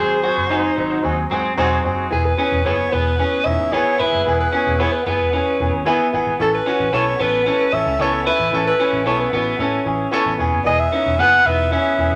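A breathy, up-front alto saxophone carries the melody in this uplifting, joyful soul excerpt, its subtone and vibrato lending a jazz-style glow over a clear, polished concert grand piano that slips in a fill at 5.6 seconds. Beneath them, a twangy, slightly broken-up electric guitar through a small old amp plays a lo-fi riff, a round, foam-muted picked bass holds the low end, and a dark semi-hollow guitar adds clean stabs in the background from 0.5 seconds. A warm, distant horn section joins on a loose second line at 1.0 seconds, during an opening band accent, with a wet studio reverb around the whole band.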